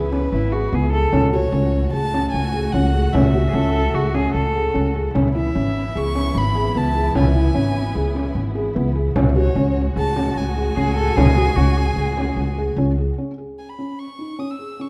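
Pensive yet urgent, this excerpt of contemporary chamber music moves in 5/4 at 149 BPM in C# minor, its harmony circling C#m7 and F#madd9/C# before arriving on a bare C#5 at 13.2 seconds. A rich, airy violin carries the melody with light vibrato over the mellow arpeggios of a felt-muted upright piano, its action noise audible. A lush symphonic string section holds sustained chords with portamento, and a woody, growly pizzicato upright bass sits up front. A nasal, boxy cello adds a second line from 0.3 seconds, a small, bright frame drum sits in the distant background, and moderate scoring stage reverb rounds out a dark, warm production.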